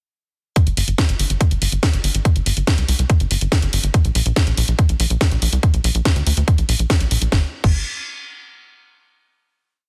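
A tight four-on-the-floor electronic kick drives this short, alien psychedelic trance piece at 142 BPM in 4/4, tuned to A4 = 439 Hz, entering at 0.6 seconds together with a programmed garage drum kit with cracking snare backbeat, bright closed and open hats and crash, while from 0.7 seconds a punchy, dark sequencer bass rolls in sixteenth notes between G1 and D2 with a fast-attack filter pluck, before the groove gives way to a final chord at 7.3 seconds in a dry, dense and heavily limited modern mix.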